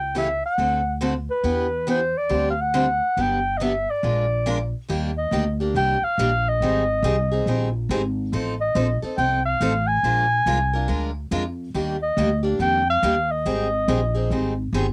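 Clarinet and upright bass open together at the start of this lively, swinging excerpt of acoustic string swing in the gypsy jazz manner, moving at 140 BPM in 4/4 with a moderate swing on the eighth notes, and the picked steel-string parlour guitar joins at 0.1 seconds. The clarinet carries the melody up front in a mellow, vintage jazz voice, using subtone, light vibrato and scooped notes, and its sound carries a cassette tape colour. The pizzicato upright bass sits low and woody with a thumpy attack on steel strings, anchoring the harmony. The guitar accompanies with a bright, boxy tone from fresh strings, finger squeak audible, and it too bears a cassette tape character. After an opening passage of shifting seventh chords, the music settles into Eb major at 4.9 seconds, cycling through Ebmaj7, Abmaj7, F7 and Bb7 under light reverb, with the slightly detuned pitch and homemade cassette recording giving it an intimate, old-fashioned feel until the clarinet stops at 14.6 seconds.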